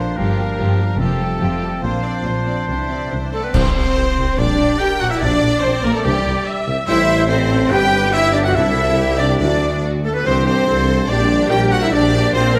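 A heroic, triumphant adventure film score cue, cut from a longer piece, in which a close, lush violin section carries the melody over bright clarinet, airy flutes, a clear oboe and a very quiet second violin line, with clear violas accompanying in the background while dark French horns and warm trombones hold sustained chords behind them. An up-front double bass section and distant cellos anchor the bass, joined at 3.5 s by a vintage-toned tuba and a single accent of dark clash cymbals and concert bass drum that launches the second section. The whole orchestra sits in a wet scoring-stage reverb that gives it a broad, ringing sense of space.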